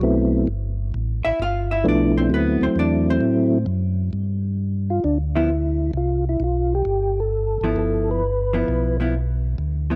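Jazz with a bluesy, soulful mood, this swung 4/4 excerpt is taken from a longer piece. A soft, flute-like tonewheel organ carries the melody through a slow rotary speaker and chorus vibrato, its clean tone marked by percussive second-harmonic attack. Beneath it, a second organ holds down the bass with a round, dark sound, slow rotary motion and audible key click. A compressed, picked hollow-body electric guitar enters at 1.2 seconds, taking a solo that lasts until 4.1 seconds before settling into accompaniment. The harmony moves from G13 to D13, then through G5 and C5 before returning to G13. All three parts sit up front in a dry, close recording with a 1970s studio character.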